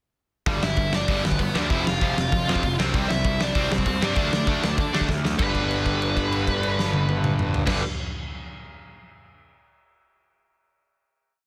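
Punk rock at 195 BPM in G major, this short, energetic and rebellious piece kicks off at 0.5 seconds with two palm-muted guitars playing eighth notes in the background, one crunchy and the other bright, over a growly fuzz bass driving eighth notes and a big rock kit with a punchy kick and fat snare up front in a two-step groove. A dark, smooth lead guitar sits forward with a motif-based melody in period phrases, partly doubled in octaves, over a G, F5, C and D5 progression. A drum fill at 5.1 seconds leads into a held final G chord, all in a dense, heavily limited mix with little reverb.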